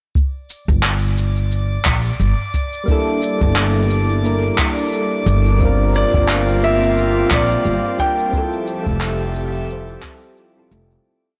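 Sunset chillout with a smooth, warm feel, built on a soft, deep electronic kick, a light lounge beat of layered cabasa and handclaps, and a woody pizzicato upright bass playing a dub-style line up front. A glassy, drifting texture holds a high note from 1.0 seconds, round electric-piano-like synth keys with chorus, phaser and delay hold chords with syncopated pushes from 2.8 seconds, and an airy, breathy pad joins at 5.6 seconds. A warm concert grand piano adds a motif-based melody through tape echo from 6.0 seconds as the whole short piece fades out from 7.4 seconds, all within a blown-out, overdriven recording.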